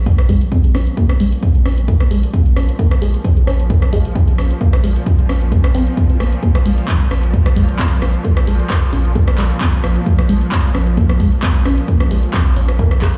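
Dark and driving, this excerpt of peak-time techno rides a heavy, layered electronic kick drum up front, with a punchy analog drum machine adding handclaps, hi-hat and rim click, while a deep, round sine sub bass with tube saturation and sidechain pumping anchors the low end. A juicy, squelchy blip pluck with phaser and digital delay carries the riff over a swarming, tense, evolving drone with granular texture and built-in reverb. A filter sweep on the synth arpeggio runs the full 13.2 seconds, and the sound carries the stone-room ambience of a big system in a bare space.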